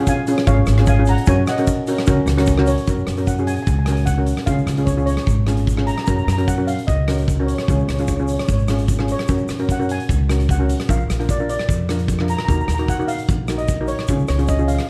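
A bright double-seconds steel pan, struck with hard rubber sticks, sits up front in this bouncy, carefree calypso at 150 BPM in 4/4 with a straight feel in F# major, carrying the accompaniment beneath an airy, shimmering lead pan played with medium rubber sticks. A big rock drum kit joins at 0.1 s with hi-hat, a tight kick and rim click, its big-room sound mid-forward with a rolled-off top, while a grainy tube shaker stays in the background. At 0.5 s a woody, pizzicato upright bass on steel strings enters as the loudest part, anchoring the low end. The harmony moves mostly between C# and F#, with an F#add9 at 2.9 s marking a new section and a later turn through A# and D#m before landing back on C#. Moderate studio reverb and a dark, warm production round out this clip cut from a longer piece.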